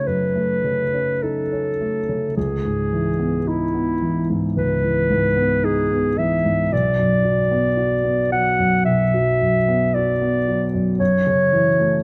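Wistful and hazy, this impressionist classical duo, cut from a longer piece, drifts in rubato as a smooth-topped solo clarinet carries the melody up front over a warm concert grand piano accompaniment, both playing throughout the 12 seconds. The intimate, natural piano reaches into deep bass, with its action noise audible, as the harmony moves from F#m6 through C#m9 and Bm to F#m7. Close, detailed microphones capture the pair in a moderate scoring-stage reverb.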